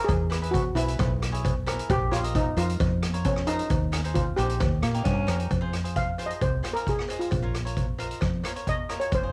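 Calypso at 133 BPM in a straight 4/4, carefree and festive, heard in a short cut from a longer piece that was home-recorded on cassette in a small room with light reverb. A shimmering double-seconds steel pan, played with medium rubber sticks, carries the melody up front and takes a solo from 5.5 seconds to the end. A crisp, picked acoustic cavaquinho plays accompaniment beneath it, while a foam-muted fingered electric bass, direct and amped, anchors the low end. A street-band drum kit with a boomy kick, hi-hat and rim click sits forward with a rolled-off top, and a vintage, band-limited cowbell ticks along in the background. Briefly, at 4.8 seconds, a raspy, growling alto saxophone adds a distant jazz-style line with vibrato before the harmony moves from Eb7 to Fm.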